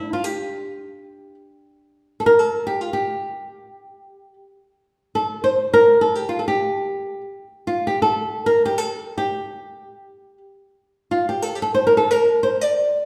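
Bathed in the reverb of a resonant recital hall, this hypnotic, melancholic 13.1-second excerpt of Turkish makam music in huseyni on G unfolds in free time, carried by a single boxy, up-front flamenco guitar fingerpicked alone in a warm, acoustic voice.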